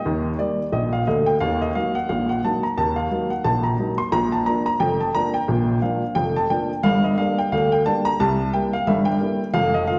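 Cheerful and jaunty, this ragtime piano piece moves at 88 BPM in 2/4, with a light swing on the sixteenth notes. A solo upright piano carries it from 0.0 to 10.0 seconds, ranging from F1 up to C6, its woody, slightly detuned tone sitting up front and intimate, with the audible clack of its action adding a natural, close-up character. The harmony moves from Eb to Ebm, then to Bb and Gm, arriving on a C7 at 8.2 seconds. Tuning sits a touch high at A4 = 445 Hz. The instrument rings out in the wet reverb of a recital hall, as if captured in a church or concert hall. The passage is cut from a longer piece.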